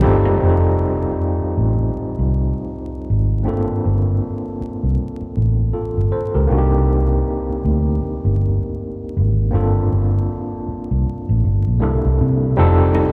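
A round, foam-muted electric bass sits up front and carries this smooth, soulful neo-soul excerpt from start to finish, moving at a relaxed 79 BPM in 4/4 with a swung sixteenth-note feel. Beside it, an overdriven tine electric piano plays the accompaniment throughout, its barky, gritty tone pushed through a combo amp and shimmering with fast tremolo. The harmony drifts through rich extended chords, from F9 to Gm11 and Cm9, then back through Gm11 and C13 to F9 near the end. Three very quiet colours surface only in brief flashes at the opening and again in the closing moments: a swirling, warbling string machine treated with phaser and ensemble chorus returns around 12.5 seconds, followed around 12.9 seconds by a slightly broken-up, lo-fi guitar through a small old amp and close, dry congas played with soft hands. The whole mix is bathed in a cathedral-sized reverb that lingers for nearly five seconds, and vinyl crackle lends it a vintage, church-hall patina.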